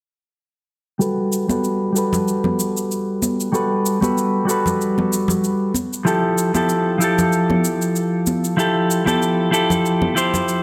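A clean electric guitar sits up front in a moderate concert hall reverb, its picked, compressed tone roughened by vintage 12-bit sampler grit and softened by a low-pass filter and delay, with a filter sweep running through its part. This relaxed sunset chillout cut in G major moves at 95 BPM with a gentle 16th-note swing, the guitar carrying the accompaniment from Gmaj9 at 1.0 seconds to Fmaj9 at 5.7 seconds. An electronic, layered cabasa in studio reverb sits low in the mix, while close, dry, high-tuned congas ring out under hard hands from 1.5 seconds.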